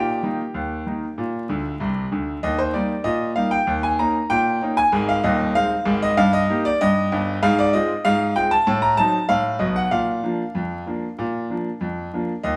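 Vinyl crackle sits over a wet stone-room reverb, giving this short cut from a longer ragtime piece the feel of a live performance captured in a single room. A solo grand piano carries everything, its tone clear and slightly boxy, with a short sustain that keeps each note crisp and up front in the mix. The music is lively and jaunty, moving in a straight two-beat metre and covering a broad span of the keyboard from deep bass notes to bright upper-register lines. Early on, the piano plays a brief fill from 1.5 to 2.4 seconds that leads into a longer passage. That passage moves through Ab, Eb/G and Fm/Ab before a diminished chord adds a touch of colour and tension ahead of the closing Bb.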